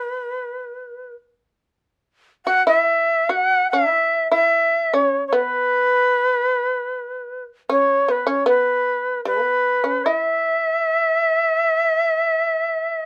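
A moderate small-room reverb gives this short recording a close, intimate space, with both instruments placed up front. It is a piece of Japanese traditional chamber music in 4/4, played with a free, rubato feel and a still, solitary mood. A bright, reedy shakuhachi carries the melody throughout, its end-blown bamboo tone airy and touched with vibrato, tongued attacks and a soft chiff, while its highest frequencies are gently rolled off. Beneath it, the fretless shamisen plays a second line in a lower register, its plectrum-plucked notes percussive and buzzing. Both parts sound together from 0.0 to 13.1 seconds in a single section, a brief passage cut from a longer piece.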